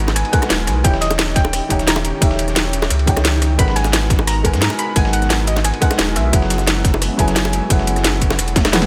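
A straight 4/4 groove at a brisk liquid drum and bass pace drives this lush, dreamy excerpt cut from a longer piece. The tight electronic kick, the loudest part, is layered with a garage kit of cracking snare, crisp hats, rim clicks and toms. Behind them sits a gritty, overdriven soul sampler-style kit of hi-hat, ride and snare, with close, dry, high-tuned bongos struck with hard hands, and a short drum fill closes things out at 8.6 seconds. Underneath, a deep, round sine sub bass sits up front, while a felt-muted upright piano plays soft, intimate accompaniment through tape echo. A very quiet, breathy pad holds sustained chords with a slow attack and long release, and a soft, rounded pluck carries a dark melody through analog chorus, cassette tape and tape echo before stopping at 6.5 seconds. The harmony moves through minor ninth and altered dominant colours, and the sound stays close with little reverb.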